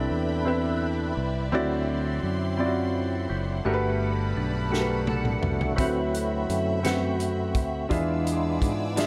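A slow, straight 6/8 feel carries this uplifting, jubilant gospel passage, cut from a longer piece. The tonewheel organ takes the solo lead throughout, its fat, percussive tone marked by key click, third-harmonic percussion, chorus vibrato and a slow rotary speaker. Beneath it, a brilliant grand piano plays accompaniment up front, while a fingered electric bass holds down the low end with a warm, direct sound. A lush, bowed string section sustains focused chords high above, sitting quieter in the blend. At 4.7 seconds a natural country drum kit enters with a fill across the toms, snare, kick and hi-hat, its punchy kick and medium-tuned snare sitting up front. The harmony moves through Cmaj9, D9, Gmaj9 and D13 to a tense E7b9, all set in a large studio reverb within a dark, warm production.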